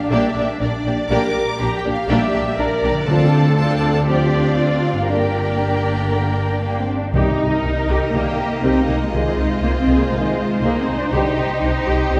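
This excerpt of heroic adventure film scoring in G dorian opens with a lush, vibrato-rich violin section carrying the melody over bright, ringing fingerpicked arpeggios from a very quiet concert harp. It moves at 120 BPM in a straight 4/4 with a determined, swashbuckling spirit. A second violin line sits in the background, while violas with a soft attack and an expressive tone fill in the accompaniment. The bass comes from a smooth, distant cello section and an up-front double bass section with a clear, focused sound, and a mellow, faint French horn section holds sustained chords until 6.3 seconds. Timpani struck with hard mallets add brief, articulate hits, and from 7.1 seconds a subdued, classical-style trombone section enters with sustained chords as the harmony moves from Gm/Bb and Dm7 toward Eb/C and a closing Cmadd9. A wet concert-hall reverb places the orchestra further back in the room.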